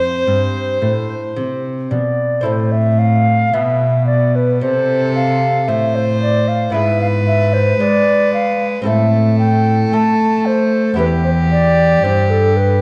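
In a straight 4/4 at 56 BPM, this radiant, serene baroque-style sonata movement in A minor unfolds over a continuo, its chords moving from C through Am, E/G# and back to Am before settling on Em near 11.0 seconds. A bowed gut-string violin carries the melody with light vibrato in period style, while a pure, wooden baroque flute, close and up front, sings a crisp, expressive second line above it, and a delicate fingerpicked lute with doubled strings fills in the harmony. Beneath them a rich, reedy cello anchors the bass, all set in a dark production with the lush tail of a recital hall.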